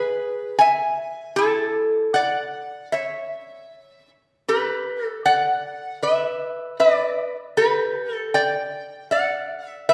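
A bright, nasal metal-body resonator slide guitar carries this relaxed, dreamy Hawaiian piece alone, played with fingerpicks and sitting up front across its range from E4 to G#5. The unhurried 78 BPM 4/4 groove has a gentle swing, and the harmony moves from E to Asus4, through an open unaccompanied passage, to G by 4.4 seconds. A lush recital-hall reverb surrounds the metallic tone, giving this short excerpt from a longer piece the airy spaciousness of a church or concert hall.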